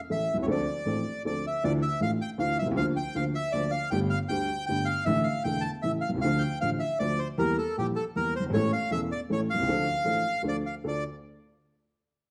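A reedy, bright bandoneon carries the melody with a slapback echo, while a woody, slightly detuned upright piano with audible action noise accompanies from 0.1 s. This is a tense, melancholic tango in D minor, in 3/4 at 156 BPM with a rubato feel, moving from Dm7 through Bb/D, Gsus2 and Edim to A and back to Dm. Both instruments sit up front in a dark production with a moderate large-studio reverb, and the passage is cut from a longer piece.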